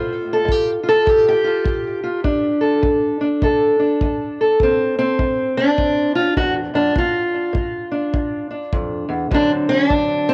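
A boxy, dark-toned fingerpicked steel-string parlour guitar sits up front, carrying the melody in this soulful, rollicking fragment of acoustic country blues with a swung feel, its sound colored by cassette tape and a touch of tape echo. A smooth, tight kick drum with a rolled-off top joins at 0.5 s, also with a cassette-tape character, as the guitar moves through chords such as Fsus2/G, D5 and D7. The small-room ambience gives it the intimate feel of a home recording.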